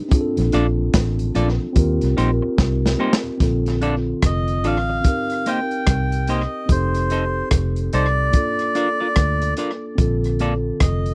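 A dry, close recording in a 1970s studio style, lightly touched with reverb, frames this bittersweet, smooth lovers rock reggae excerpt, cut from a longer piece with a swung sixteenth-note feel. Up front, a saturated, gritty breakbeat kit with a tight kick, medium-tuned snare, rim click and hi-hat carries tape echo, its top end rolled off, while a dark, round, foam-muted fingered electric bass sits low beside it. A clean semi-hollow electric guitar with a hollow-body tone plays stabs, and a mellow tine electric piano, direct and echoed on tape, fills out the harmony over Bbmaj7, Eb6, Cm7 and F7. A very quiet, flute-like tonewheel organ through a rotary speaker hums underneath until 3.3 seconds, and a drum fill from 2.6 seconds leads into the next section. At 4.3 seconds a reedy, breathy, nasal melodica takes the melody, its airy plastic-case tone trailed by tape echo.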